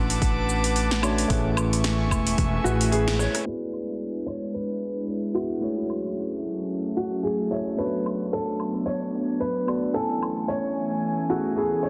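Warm and relaxed, this sunset chillout excerpt moves at 111 BPM with a swung 16th-note feel. A worn, slightly out-of-tune tine electric piano with gritty 12-bit sampler texture and tape echo plays alongside an airy, breathy, chorused pad. A growly, punchy fretless electric bass and a deep, overdriven electronic kick anchor the opening until the kick stops at 2.5 s, while an overdriven deep house kit of punchy snare, metallic hats, cabasa, rim click and woodblock carries on. A dark, boxy baby grand piano with audible action noise and tape echo takes the melody from 2.6 s, just before a band accent and drum fill. From 3.5 s a filter sweep unfolds over the E7, F#m7, Bm7 and Amaj7 changes, all set in a lush hall reverb within a dense, heavily limited mix.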